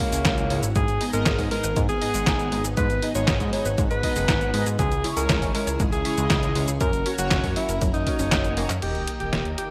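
A straight 4/4 italo disco groove drives this danceable, melodramatic excerpt, built from a punchy electronic kick and an up-front, tape-tinged 8-bit drum machine whose snare, handclaps, hi-hat, cabasa and crash sit in gated reverb, with a fat, nasal analog bass underneath. A breathy alto saxophone carries the melody with light vibrato over a lush string machine and dark, brassy synth brass stabs coloured by chorus and phaser, while a round analog pluck plays arpeggios in the background from 0.8 seconds through chorus and digital delay. A drum fill at 8.3 seconds leads into an electronic sub drop at 8.8 seconds, within a bright 1980s-style digital production with light reverb.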